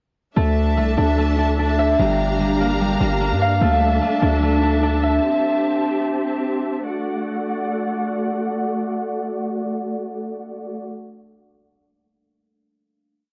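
Menacing and eerie, this short trap piece in hip hop style moves in a half-time feel. A rich symphonic string section holds lush, bowed chords up front, smooth and even with vibrato, running from 0.4 to 10.9 seconds under a tape-worn haze. A fingerpicked concert harp rings through a patterned arpeggio in eighths, repeated like a sampled loop, its acoustic tone dulled by a low-pass filter and trailed by analog delay until 7.8 seconds. A punchy, hard-hitting 808-style bass sits up front with a fast attack, a noise layer on its sine body and long sub-bass notes that slide in pitch, stopping at 5.2 seconds. The breakdown gives way at 6.9 seconds to a final D chord, all heard through light reverb and the muffled character of a home cassette recording.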